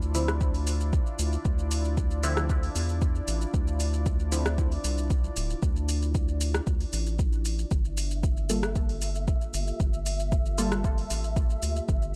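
A straight 4/4 pulse at 115 BPM drives this nocturnal, deep dub techno piece in D minor, where an up-front electronic kick and a soft vintage rhythm box of metallic hi-hats, rim clicks and shaker sit over a round analog bass, while a dark, sidechain-pumped ambient pad holds chords that move from Dm9 to Gm9 at 7.7 seconds, muted filtered chord stabs pass through phaser, cassette tape and dub echo, and a flickering grainy texture enters at 8.1 seconds, the whole heard as a dry, gritty hardware recording with transformer saturation.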